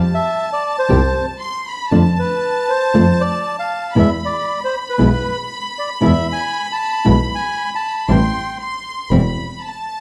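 In a rubato 4/4 at 117 BPM, this tense, sultry tango fragment sets a reedy bandoneon melody up front over a clear, smooth bowed double bass with vibrato and a fingerpicked nylon-string guitar, while a rich, earthy chamber violin section adds a distant second line with light vibrato. The harmony moves through Fadd9, Dm/F and E before landing on Am7 at 8.1 seconds, all in a dark, warm production with moderate large studio reverb.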